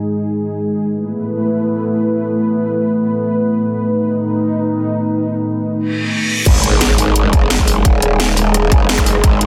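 A straight 4/4 pulse at 173 BPM drives this tense, aggressive dark technical drum and bass fragment in G# phrygian, where a moody, detuned sawtooth analog pad with chorus and sidechain pumping holds sustained chords from 0.0 seconds, a reverse cymbal, impact and zap sit in the background from 5.9 seconds, and at the drop at 6.5 seconds a tight, overdriven, up-front electronic kick, a layered drum and bass kit with cracking snare, bright hi-hats, crash cymbal and rim click, and a growling, wobbling, formant-filtered bass with tube saturation arrive under light reverb in a dense, heavily limited master.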